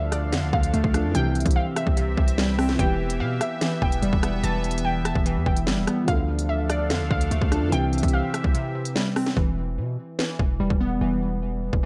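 A half-time drill groove from a hard-clipped kick, sharp snare, rim clicks and crisp hats sits up front beside a punchy, heavy 808-style bass, giving this menacing, cold hip hop excerpt its weight. Glassy, detuned digital keys spin arpeggios through chorus and delay, while an evolving, bright sawtooth pad swells on sustained chords, a felt-muted upright piano murmurs dark and intimate in the background, and a warbling, lo-fi pluck carries a second line through chorus, phaser and delay. During a break from 8.5 seconds the pluck drops away, and at 9.4 seconds the piano and pad follow and the hats fall silent as the keys, bass and remaining drums press on in a digital ambience.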